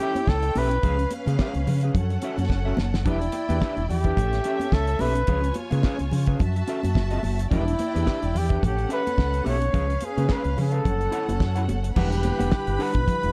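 Danceable and sultry, this short disco excerpt sets a breathy, intimate flugelhorn melody over lush bowed strings, dark clean electric guitar, a fat-snared damped drum kit with a fill at 2.5 seconds, high-tuned congas in the background and a round fingered bass up front, with a mellow tonewheel organ on slow rotary speaker joining for sustained chords at 12.0 seconds in a dry, dark production.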